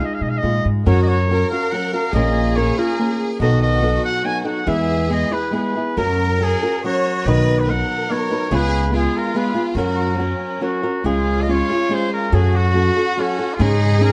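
A solo trumpet with light vibrato, played in a classical style and sounding distant and roomy, carries the melody from 0.0 s over an up-front, fingerpicked flamenco guitar whose finger squeaks are audible, while a woody pizzicato upright bass anchors the low end. This festive, proud mariachi piece moves at 142 BPM in 3/4 with a rubato feel, and from 0.9 s a lush, smooth symphonic violin section adds a bowed second line with vibrato. At 11.1 s the key shifts from F# major to Db major, all captured with close, detailed microphones and light reverb in this short excerpt of a longer piece.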